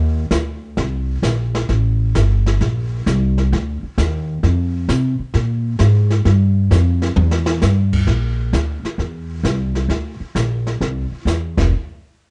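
Jazz in a swinging trio style, this short cut from a longer piece moves at 132 BPM in 4/4 with a swung feel and a warm, sophisticated mood. The upright bass sits up front, plucked on gut strings with a woody, thumpy tone that stays dark and low throughout. A brushed drum kit joins at 0.3 seconds, sitting further back in a studio room with a medium-tuned snare, boomy kick and dark cymbals, and a drum fill at 7.2 seconds leads into a new section at 8.1 seconds. Light reverb surrounds the playing, and the sound carries the worn character of old cassette tape, with warbly pitch drift and a muffled top end.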